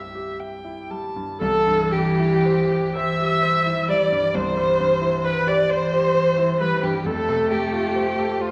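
Heard through a worn, warbling old cassette with drifting pitch and the wet reverb of a recital hall, this brief passage from a slow romantic movement for piano quartet feels tender and warm, moving in 12/8 with free, rubato timing. A single bowed violin carries the melody with a focused, smooth-topped tone and vibrato. The viola sits up front, its rich, soft-attacked bowing full of vibrato and expressive portamento. A clear concert grand piano accompanies with deep bass and a smooth, vintage character whose notes fade quickly. At 1.4 s a single cello joins with a second line, bowed with vibrato and sliding portamento. The harmony rests on C before shifting to F at 7.1 s.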